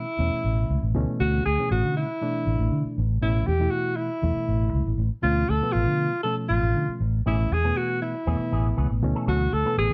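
A dark, lightly reverberant production frames this funky, bright jazz piece in A major at 119 BPM, cut from a longer performance. Up front, a breathy alto saxophone carries a vintage, solo-style melody with subtone, scooped notes and slapback echo, over a gritty, barky overdriven reed electric piano heard through a combo amp and a round, amped fingered electric bass that enters at 0.2 seconds. At 7.3 seconds an electric guitar with an envelope filter adds clean, compressed stabs coloured by analog chorus, as the chords move from Aadd9 through Dm6 to Amaj9 and Dmaj7.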